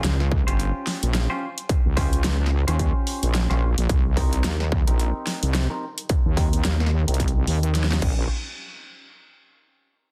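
A playful, gritty glitch hop cut opens at 0.0 s with a heavy, saturated wobble bass up front, coloured by chorus, alongside clean, hollow-bodied electric guitar stabs that pump against the beat through a low-pass filter sweep and tape echo, over a swung sixteenth-note groove. A dubstep kit with a huge snare and bright hats plays from the start and is joined at 0.3 s by the distorted, tape-tinged electronic kick, both sitting in a small room. The harmony moves from a minor sixth-ninth chord to a minor seventh and back under a dense, heavily limited modern master before the parts stop around 8.3 s.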